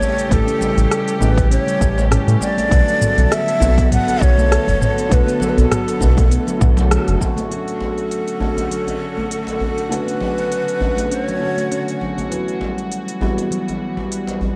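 Earthy and unhurried, this organic downtempo passage moves at 100 BPM with a lightly swung 16th-note feel, as a breathy, reed-like ney carries the melody through echoing delay until 12.0 s, above a felt-muted upright piano with audible action noise, dark sul tasto chamber strings with light vibrato, and a close, ringing handpan whose arpeggios run through a low-pass filter and digital delay. Crisp hats, rim clicks, shaker and toms from an electronic kit mix with a distant, hard-handed djembe that carries metal rattles, while a round, up-front analog bass and an overdriven electronic kick drive the first half before both drop out around 7.3 s, and the piano and strings pump against the sidechain throughout. The moderate echo-chamber reverb gives the dark production a warm studio glow as the harmony moves from A7 and Bm7 toward Dmaj7 and Emadd9 in this cut from a longer piece.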